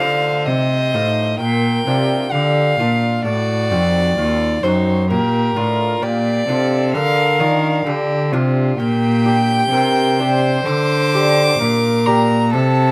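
A solemn, grave baroque-style sonata movement with continuo opens on an F7 chord, with two violins, lute and cello all sounding together from the first moment. At a slow 65 BPM in a straight 4/4, the music sits in Bb major, passes through a diminished chord at 3.3 seconds, and turns toward G minor at 8.8 seconds. One bowed violin carries the melody with a warm tone, soft attack, vibrato and expressive portamento. The second violin reaches up to D6 with a focused, smooth top and sits up front alongside the clear, even cello, which anchors the bass with a steady bowed vibrato. The fingerpicked lute fills in the harmony with a bright, delicate gut-string sound and doubled strings, some of them octave-doubled. Close, detailed microphones and light reverb keep the playing intimate in this short passage cut from a longer piece, which runs to 12.9 seconds.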